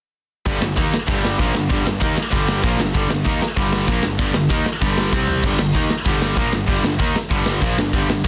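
This punk rock excerpt charges ahead at 193 BPM in 4/4 with a straight feel in G minor, its mood urgent and raw. From 0.5 seconds to 8.3 seconds, three electric guitars drive the riff: a tight, distorted, picked guitar is joined by a double-tracked distorted twin and an overdriven garage guitar that add bright grit from the background. Beneath them, a picked electric bass plays through fuzz and overdrive with a growly, direct-and-amped tone. An acoustic rock kit sits up front in a studio room, with a punchy kick, medium-tuned snare, hi-hat, crash and toms, and it breaks into a short fill at 5.1 seconds. The harmony rests on G minor, moving briefly to C5 under that fill before returning, all finished with light reverb and a dense, heavily limited modern master.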